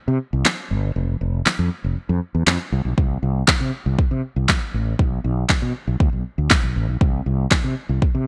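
Dance-pop at 119 BPM in C major, this carefree, summery clip cut from a longer piece sets a fretless electric bass, with its sidechain pumping and up-front, direct-and-amped tone, against a deep house drum kit whose deep kick, fat snare and handclaps sound layered and tape-warm. The bass starts almost at once and the drums join at 0.5 seconds, both carrying on to the end of the clip. The sound is bright and dry, with a 1980s-style digital sheen.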